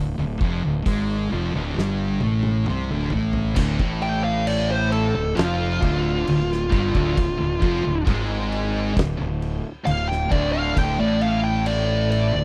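A straight 4/4 pulse drives this sludgy, hypnotic stoner and doom metal excerpt, where a pair of dark, thick fuzz guitars churn a low riff in the background over a growly, overdriven fingered bass placed up front and an oversized, low-tuned drum kit with a punchy kick, fat snare, toms, hi-hat and crash, its saturated sound rolled off at the top. After a drum fill at 1.8 seconds, a bright, double-tracked tight distorted guitar joins the riff at 3.5 seconds, and at 4.0 seconds a compressed fuzz lead guitar takes an up-front solo colored by wah and tape echo. The close, dry 1970s-style studio sound carries little reverb, though the drums ring with a stone-room character.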